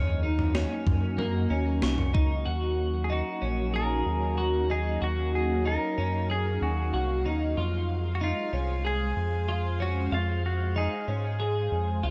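Silky string-machine chords with phaser and ensemble chorus, chiming twelve-string electric guitar arpeggios drenched in lush chorus and tape echo, a round analog bass up front, and faint bell-like glockenspiel through tape echo open this ethereal, melancholic dream pop excerpt. A gated 80s drum machine with a thumpy kick, toms and a big gated-reverb snare plays only from 0.4 to 2.3 seconds, and the glockenspiel drops out soon after. From 3.0 seconds a twangy, slide-played lap steel carries the melody through tape echo as the harmony moves from Ebm7 to Dbmaj7, all within a dark production with light digital ambience.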